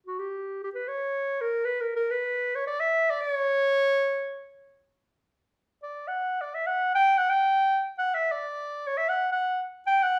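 Moving in free time, this short cut from a longer Balkan folk piece unfolds with a loose, rubato pulse. A single clarinet carries the whole passage as a solo, entering at 0.1 s and playing through to 10.2 s in F# phrygian dominant, ranging from F#4 to G5. Its tone is warm with a classical polish, and it sits up front in the mix. The mood is virtuosic and fiery, with the soloist commanding the space alone. A moderate reverb from a large studio room, with a decay of about 0.9 s, adds depth to the sound, which was captured live in one room.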